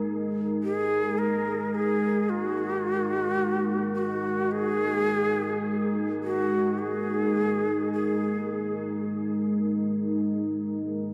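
Dark ambient drone at 53 BPM, ominous and vast, in which a deep, detuned sawtooth pad with a sub octave and chorus holds a G#sus2 chord while a breathy, close-miked bamboo shakuhachi carries an expressive melody from 0.6 to 8.8 seconds through diffuse delay, all set in a cavernous cathedral reverb with a 6.4-second decay and a dark, warm production.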